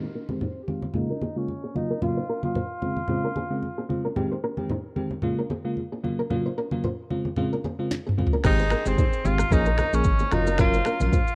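Worn, warbling cassette-tape sound and studio reverb color this sunny, romantic afrobeats piece at 112 BPM in Ab major, where a sparkling, bell-like FM electric piano with chorus and a small, fingerpicked nylon-string guitar riff with tape echo and finger squeak sit beneath a clear, vintage tenor saxophone melody with scooped notes, bright, low-tuned congas enter at 0.3 seconds, an electronic afro-pop drum kit with deep kick and sharp snare arrives with a fill at 7.9 seconds, and after a filter sweep over the opening a thick, saturated sub bass joins at 8.4 seconds alongside a loose horn section with vibrato in the background.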